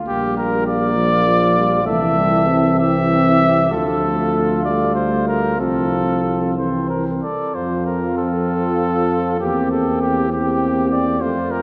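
Bathed in a wet church reverb, this stately, noble classical brass quintet fragment moves in a rubato 6/8 at 65 BPM in F major, with a smooth-topped trumpet carrying the melody up front over a vintage-toned flugelhorn second line, a distant, roomy French horn and a soft-attacked trombone in the background, and a bass trombone with vibrato anchoring the low end.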